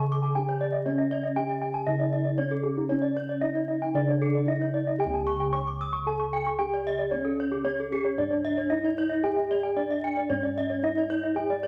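Under a large, wet studio reverb and a vinyl crackle, this ceremonial, shimmering gamelan passage in C# pelog moves at 113 BPM in a straight 4/4, with a mellow bronze metallophone struck with padded mallets carrying the melody, round, airy bossed gongs holding the bass up front, a mid-forward metallophone played with a wooden mallet spinning arpeggios, and a bright, dry metallophone struck with a horn mallet adding higher arpeggios, their paired tuning producing shimmering beats as the music shifts into a new section at 5.0 seconds.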